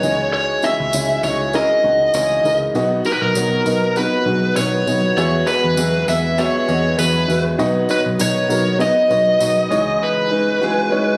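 An up-front, biting overdriven lead guitar carries the melody over a dark, woody upright piano with audible action noise, a picked steel-string acoustic guitar riff in the background, a round foam-muted electric bass, jingly close tambourine and very quiet woodwind chords with light vibrato in this anthemic, swung piano-driven pop excerpt, heard through a phone in a reverberant studio with a faint mains hum, the bass stopping at 10.0 seconds.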